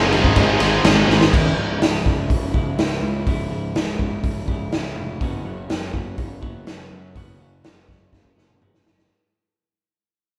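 This quiet-loud alternative rock fragment, cut from a longer piece, moves at 124 BPM in a straight 4/4 in C# minor, with a brooding, dark mood and the light reverb of a band playing live in one room. It opens on a heavy G# chord, where a thick fuzz guitar and a tight, double-tracked distorted guitar sit in the background beside a very quiet overdriven guitar, all playing a riff, while a distant, woody string section holds sustained chords at the edge of hearing. A drum fill at 1.1 seconds ends this burst, and at 1.3 seconds the heavy guitars and strings stop as a dark, clean electric guitar enters to pick arpeggios in the background over C#m and then F#sus4 while the music fades out. Underneath throughout, a round, punchy bass with overdrive and fuzz grinds, and the raw garage drum kit stays up front with a punchy kick, a medium-tuned snare and a gritty, saturated character, using crash, ride, hi-hat and toms. 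Another drum fill runs from 8.1 to 9.1 seconds as the fade closes the passage.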